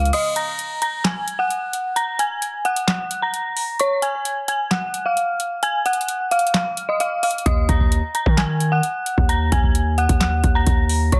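A half-time trap groove in 4/4 anchors this eerie, menacing hip hop cut from a longer piece. It is built on a booming analog drum machine with a deep kick, a tonal snare, metallic hi-hats, handclaps and crash cymbal, its tape-colored sound re-recorded in a small room that gives the snare, clap and hats a short ambience. Over it, a dark, detuned FM synth bell carries the melody from the start, its inharmonic, full-bodied tone shaped by chorus, a low-pass filter and digital delay. A distorted 808-style bass sounds only for an instant at the opening, then sits out a long break before returning at 7.5 s with a heavy, aggressive blend of sine and noise. The harmony shifts between rootless chords during the break and lands back on the minor home chord as the bass comes in. Dense, heavily limited mastering with little reverb keeps the drums, bass and bell up front.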